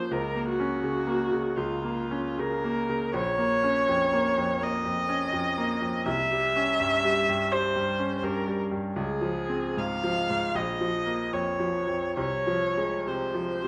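A single bowed viola sings a smooth, vibrato-laden melody up front over brilliant grand piano accompaniment in this elegiac, solemn romantic classical passage, a 13.7-second fragment of a longer piece that moves with rubato through chords such as Bbm, C and Dbmaj7 within the lush reverberation of a recital hall.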